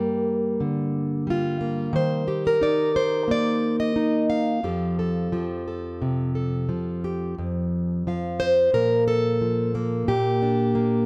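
A fingerpicked, plugged-in steel-string acoustic guitar opens alone and plays throughout this gentle, pastoral folk piece, moving at 89 BPM in a straight 4/4 in F mixolydian, tuned to A4 = 439 Hz. Its jumbo body sounds full and up front with fresh strings, set in light reverb, and it ranges from F2 to F5 over Gm7, Eb and Fadd9. At 7.4 seconds a new passage starts with a pause in the harmony before settling on Bb5 and Gm/Bb, as this brief cut from a longer piece closes at 11.1 seconds.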